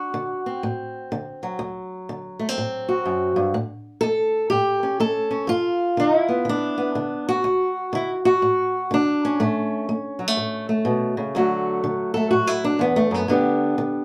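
A fingerpicked, ladder-braced acoustic guitar opens this soulful, rollicking piece of acoustic country blues, set up front in the mix with a dark, boxy tone and the dull bite of old strings. The tempo sits at 123 BPM in 4/4 with a 63% swing on the eighth notes, giving the music a loping, good-humoured gait. The guitar ranges from D2 up to A4, moving through D7, A7 and G7 before settling onto plain D and A chords. At 11.3 seconds the music shifts into a new section, where the steel-string guitar takes a solo turn over D and G until the clip ends at 14.0 seconds. The player sounds live in a studio room, with a short, wet ambience that lends the woody instrument an intimate, close-at-hand feel. This is a brief cut from a longer piece.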